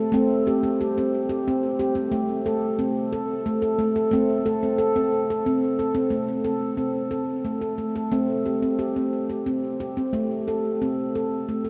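In a straight 6/8 lilt at 60 dotted-quarter beats per minute, a solo handpan plays throughout this gentle, hypnotic world meditation in A minor, moving between C5/A and A minor chords within the range of A3 to A4. The ringing stainless-steel tone, sounded with sharp finger strokes, is close-miked and sits full and up front, with a delay trailing its notes. The whole mix is dreamy and soaked in a huge ambient reverb with a long tail, and a second passage begins at 6.1 seconds in this short section cut from a longer piece.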